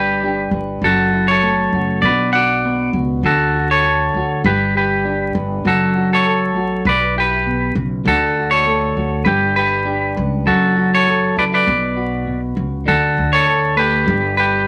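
Vinyl crackle and a wet studio reverb frame this sunny, joyful highlife guitar band excerpt in a gently swung 4/4, where a bright, clean, up-front picked electric guitar carries the melody over a compressed, slightly broken-up rhythm guitar and a woody, growly pizzicato upright bass, all three playing throughout as the chords cycle through G, F#m and Bm toward D before a short new section begins at 12.9 seconds.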